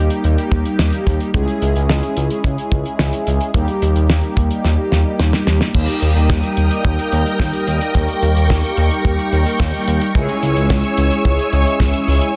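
Mellow, brassy synth brass treated with chorus and phaser opens this cool, nocturnal synth-pop excerpt alongside a smooth, gliding synth bass, while a damped 70s drum kit with a fat snare, tight kick and dark cymbals comes in at 0.1 seconds. After a drum fill from 4.6 seconds, a shimmering, vintage string machine of violins enters at 5.7 seconds with bright, sustained chords that move between D# and C#m with the rest of the band. Light reverb and a small room ambience surround the parts, and the mix is dense and heavily limited.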